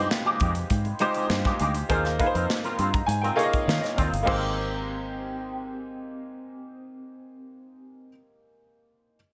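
Glossy and upbeat, this short cut from a polished 1980s jazz-funk pop track moves in a straight 4/4 over Fm9 and Ab69/Eb before settling on Abmaj9. A clear, up-front baby grand piano with analog chorus accompanies and adds a fill from 2.5 to 4.3 seconds, while a bright, twangy electric guitar plays a compressed, picked riff through an envelope filter and ensemble chorus, and a dark, round fingered bass holds the low end. A punchy, airy modern studio drum kit with bright cymbals and gated reverb drops out at 4.4 seconds, and a light reverb surrounds the mix.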